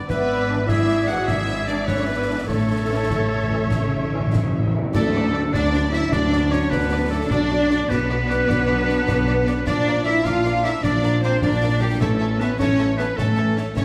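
Triumphant and adventurous, this heroic film-score excerpt in 12/8 sets a lush symphonic violin melody amid clear oboe, hollow flute, quiet clarinet and chamber violins, with expressive portamento violas, distant cellos and double basses, dark French horns and tight trombones holding sustained chords, background snare, bass drum and clash cymbals, soft round timpani fills from 2.5 seconds, and a tam-tam shimmer at 4.9 seconds, all set in a moderate scoring-stage reverb.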